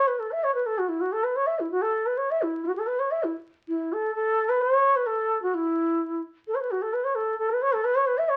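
In a straight 4/4 pulse, this serene, meditative fragment of Indian classical music features a solo bansuri with a pure, bamboo tone, soft attack and expressive vibrato, set in moderate studio ambience and heard through the crackle of a very old 78 rpm record.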